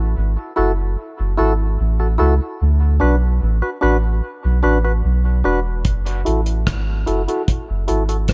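This excerpt from a longer dub reggae piece moves at a straight 74 BPM in 4/4, in F# minor with tuning set to A4 = 437 Hz, and its mood is deep and meditative. It opens as a break, with a soft, round sub bass carrying the low end from the start, its sustained, fast-attacking tone sitting up front. At 0.6 seconds a percussive organ stab joins, hollow and mellow, with a quick, decaying attack treated with chorus, a low-pass filter and dub echo. The harmony moves from F#m7 to D6 at 2.6 seconds, then returns to F#m7 at 5.8 seconds. At that point a cloth-damped, thuddy drum kit enters with hi-hat, tight kick and rim click, its dry, dark sound and rolled-off top placed close to the listener, while a filter sweep works on the organ stab. Light reverb and a small room ambience hold the parts together.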